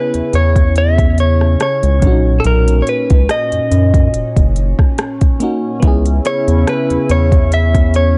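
Contemporary R&B with a moody, late-night feel, this short cut from a longer piece moves through C#m7, Bmaj9 and back to C#m7 over a lightly swung groove. A clean, picked electric guitar, recorded direct and compressed, carries the melody up front in a high register. Beneath it, an FM electric piano with a warbling, vintage tone and a noise layer plays the accompaniment through a phaser, while a chorused pulse-width pad holds shimmering, retro chords with a slow attack. The round analog bass and a smooth, electronic drum kit with soft kick, hi-hat and rim click both come in at 0.1 s and sit prominently in the mix, the bass deep and dark. The production is dry, with a mellow top end that keeps the mood intimate.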